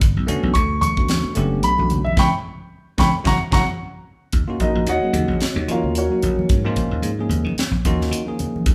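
A live band in a large studio room, with a moderate reverb tail, gives this short cut from a longer electric jazz fusion piece a funky, driving energy and a lightly swung sixteenth-note feel. A crisp, up-front drum kit with a high-tuned snare and tight kick pairs with a growly, punchy thumbed slap bass, while soft-handed congas sit low-tuned in the background. A bell-like tine electric piano supplies clean accompaniment over rich chords such as Gmaj9#11 and C#m7. The band hits a shared accent from 2.2 seconds, the electric piano adds a fill, and a drum fill at 3.8 seconds leads into a new section at 4.3 seconds. There, over an Ebm9 chord, the dark, mellow grand piano, which has carried the melody since just half a second in, takes a solo.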